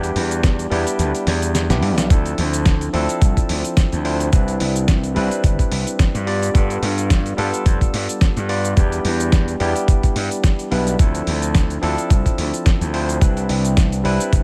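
A 4/4 groove at 108 BPM with a light 55% swing on the sixteenths sets up this sensual, groovy slice of nu-disco in D dorian, cut from a longer piece. A thumpy, compressed electronic kick sits up front, entering at 0.4 seconds and dropping out from 1.0 to 2.1 seconds, while the drum kit plays a fill from 1.3 to 2.1 seconds. That dusty soul sampler-style kit supplies hi-hat, shaker and a medium-tuned snare with a tape-warm, gritty grain. An overdriven slap bass, punchy and up front, holds the low end from G1 to G2, while a bright, barky tine electric piano through a combo amp carries the chords with a dub echo. The harmony cycles through Em7, Dm7, Cmaj9 and G9 in a dry, close-sounding room.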